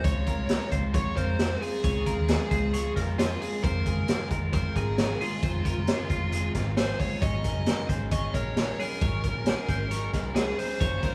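Nostalgic and bright, this jangly indie pop excerpt moves at 134 BPM in a straight 4/4, cycling through Dbmaj7, Fm7 and Ab7sus4 as a dark, fuzz-distorted lead guitar carries the melody over an overdriven semi-hollow guitar's hollow-body accompaniment and a twangy twelve-string electric guitar's phaser-tinted arpeggios. Underneath, a foam-muted picked electric bass gives round, punchy low notes, while a raw garage drum kit of kick, snare and hi-hat sits up front with a gritty, saturated, rolled-off sound. The band plays live in one small stone room, with a wet reverb and a vinyl crackle over the whole performance.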